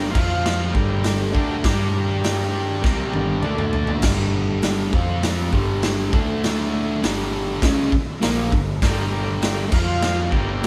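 The fuzz guitar stands out most: a bright, double-tracked riff, picked and compressed, sitting up front in this raw, gritty garage rock excerpt at 100 BPM in G minor. A saturated acoustic drum kit shares the foreground, with a punchy kick, medium-tuned snare, hi-hat, toms and crash cymbal ringing in a pumping stone room, and a drum fill from 2.8 to 4.0 seconds carries the music into its second section. Underneath, a dark, round hollow-body electric bass holds the low end throughout. A vintage combo organ with a buzzy tone and light vibrato plays clean sustained chords in the background, dropping out at 4.0 seconds and returning at 8.8 seconds. The band sounds as if it is playing live together in one room, its moderate stone-room reverb framing the straight 4/4 feel as the chords move between power chords on F, D and G and G minor.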